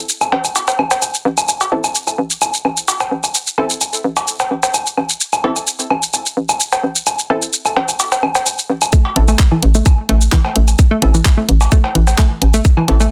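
Cool and clinical, this minimal techno excerpt in A minor runs at 129 BPM on a knocking, punchy FM bass with sidechain pumping, an overdriven garage kit of handclaps, hi-hat and shaker, and tape-warm woodblock and cowbell with digital delay; a muted, detuned dub chord stab with 12-bit sampler grit enters at 1.7 seconds, and the drop at 8.9 seconds brings a tight, overdriven electronic kick up front and a hollow, bouncy square-wave pluck riff with chorus, within a dense, heavily limited, dry master.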